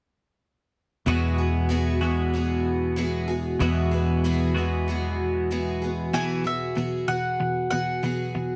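Over a straight four-beat pulse, this jangly, nostalgic rock excerpt rings out on an Eadd9 chord, with a boxy, shimmering picked twelve-string acoustic guitar (its finger squeak audible) and a twangy, clean twelve-string electric riff bathed in lush chorus. A round, punchy fretless bass holds the low end until 6.1 seconds, when a woody mandolin takes the melody on its double strings. The close, dry 1970s-style studio sound, touched with light reverb, keeps every part up front.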